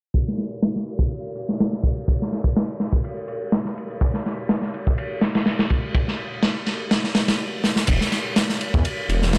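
A swaggering breakbeat groove at 124 BPM in 4/4, the drums carry a light 16th-note swing. The acoustic kit of kick, snare, ride and crash sounds crunchy and saturated, with a tight kick, a medium-tuned snare, dark cymbals and a rolled-off top, all sitting up front in a studio room. A filter sweep runs over the drums through the opening stretch, leading to a stop at 7.4 seconds and a drum fill at 7.6 seconds. At 7.9 seconds a detuned sawtooth bass enters, thick and menacing with a beating, tube-saturated tone, a fast attack and sustained notes between E1 and E2. The gritty hardware recording carries light reverb, transformer saturation and a low-pass filter, and this brief cut from a longer piece ends with bass and drums together.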